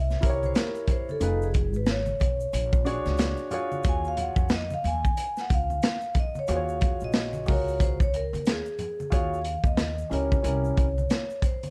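A soft-mallet vibraphone carries the melody in this smoky, mellow jazz-hop cut, its metallic, ringing tone sitting mid-forward and taking a solo from the start until 9.1 seconds. Beneath it, a crunchy breakbeat kit of hi-hat, punchy kick and medium-tuned snare sits up front with a dark, smooth, small-room sound and a rolled-off top, swinging gently on the sixteenths in 4/4. A pizzicato upright bass gives a woody, dark low end and drops out at 11.0 seconds. A grand piano with long sustain fills in the harmony over jazzy chords such as C7b9, Fm7b5 and Ebm11. Egg shaker and hard-hand congas stay in the background with a vintage, band-limited feel. The whole piece has a dark, warm production with moderate studio reverb and is cut from a longer work.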